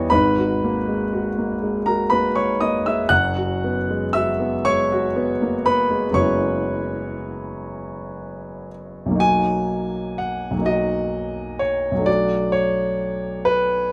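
Serene and hazy, this short fragment of a longer classical piece sits in an impressionist solo piano idiom, unfolding in a lilting 6/8 with a freely breathing rubato. A single grand piano carries everything, its tone clear, natural and intimate, placed up front in the sound with the mechanical noise of its action audible beneath the notes. The harmony drifts through rich, colored chords, opening on G#m9 and moving to F#9sus4 before settling onto Bmaj7 at 9.2 seconds, where the music turns to a new section. A final shift to Dmaj7/B lends a dreamy, unexpected shading to the close. The writing spans much of the keyboard, from deep F#1 up to bright F#6, and a light reverb gives the instrument a gentle sense of space.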